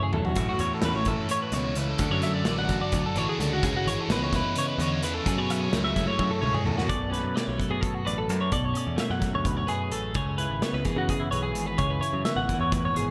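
Math rock with a midwest emo tint, this intricate, playful excerpt moves in a straight 7/8 at 257 BPM counted in eighths, with a shimmering twelve-string electric guitar spinning bright, compressed arpeggios through lush chorus and delay over a dark, scooped clean guitar, a punchy direct-sounding bass and a loose indie drum kit with a tight kick and gated reverb. A double-tracked overdriven guitar with phaser carries a biting riff from 0.4 to 6.9 seconds, as chords such as A69, Dmaj7 and F#m9 give way to a Bm9 section, with drum fills marking the opening and the turn. The bright 1980s-style digital production sits in a lush hall reverb.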